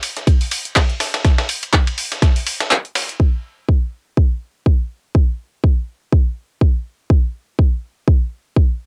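Joyful and feel-good, this short cut from a longer house track rides a swung sixteenth-note groove in four. It opens with two drum sources together: a gritty, compressed sampler-style kit with a medium-tuned snare, hi-hat and ride cymbal, its snare and cymbals thinned by high-pass filtering, alongside an overdriven analog drum machine that puts handclaps and filtered hi-hat up front. A layered, punchy electronic kick arrives at 0.3 seconds and sits loudest in the mix. At 2.7 seconds the band hits an accent as the kick briefly drops out, and by 3.2 seconds the sampler kit and drum machine have finished, leaving the kick alone for the rest of the passage. The recording has a home-cassette character with light reverb, and each of the three drum parts carries tape coloring.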